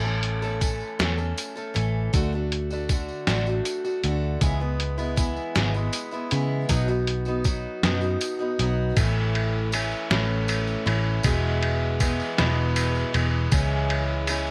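A slow, straight 6/8 pulse at 53 BPM carries this anthemic, nostalgic indie folk excerpt, where a warm picked acoustic archtop guitar with audible finger squeak, a dark, round, foam-muted vintage electric bass and a muffled, tape-warm lo-fi sampler-style drum kit with a thumpy kick sit up front, a jingly, band-limited tambourine joins in the background at 0.4 s, and the chords move from A through D, C#m7 and B before a second section from 9.0 s turns to A, E and C#m under light studio reverb.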